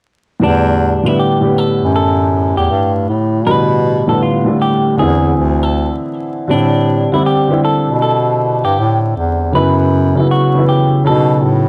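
A hazy, nostalgic lo-fi hip hop fragment in E minor at 79 BPM with a swung 4/4 feel opens at 0.4 seconds with a dark, woody upright piano softened by cassette tape and a low-pass filter, a clear bass clarinet carrying the low line up front with light vibrato, scooped notes and a jazzy soft attack, and a clean, fingered semi-hollow electric guitar singing a filtered, hollow-toned melody, all set in a dry, gritty small room with vinyl crackle as the chords drift from Em11 through Am9 to B9.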